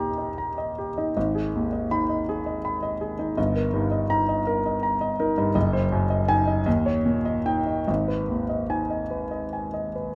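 Swaying in a lilting six-eight metre, the phrasing stretches and pulls with free rubato, giving this short passage from a longer romantic character piece a restless, unsettled pulse. The mood is passionate and stormy, a brooding minor-mode outpouring that moves through dominant harmonies before settling back onto its home chord near the close. A solo concert grand piano carries everything from 0.0 to 10.2 s, reaching from deep, resonant bass notes down at F#1 up to B5 in the treble. Its tone is intimate and natural, placed up front by close, detailed microphones that catch the audible mechanical noise of the action beneath the notes. A moderate recital hall reverb lends the sound a sense of space around that close-up presence.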